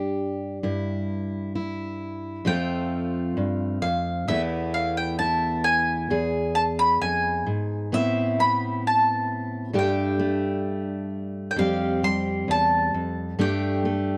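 A slow, straight 4/4 pulse at 66 BPM carries this reflective, wistful folk piece in A minor, cut from a longer work. A dark, full-bodied fingerpicked dreadnought guitar with fresh strings opens alone, and at 2.5 s a woody, double-strung mandolin enters up front with a picked solo melody, moving through chords such as F, Esus4 and E before shifting at 7.9 s to a second section built on Amadd9, Gsus2 and Fadd9. The sound is a dry, close, 1970s-style studio recording with a small-room ambience, both instruments placed intimately near the listener.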